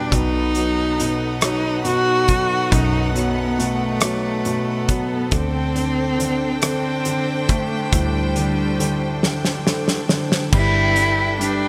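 This is a romantic, tender pop ballad in six-eight, moving at a slow 46 BPM counted in dotted quarters, cut from a longer piece. A bowed solo cello carries the melody up front, its warm, expressive voice marked by vibrato and portamento and trailed by a digital delay. A woody upright piano supplies accompaniment in its lower register with a subtle chorus, while a studio string section holds soft-attack sustained chords, played sul tasto with light vibrato in an intimate, close sound. Underneath, a foam-muted fingered electric bass gives a round, dark, amped low end, and a loose indie drum kit sits up front with a punchy kick, fat snare, rim clicks, hi-hat and dusky crash cymbals in a pumping studio room. The harmony moves from B7 to D7sus4 at 5.3 seconds, a drum fill arrives at 9.2 seconds, and the music opens onto Gadd9 at 10.5 seconds, all framed by a lush hall reverb and a bright 1980s-style digital sheen.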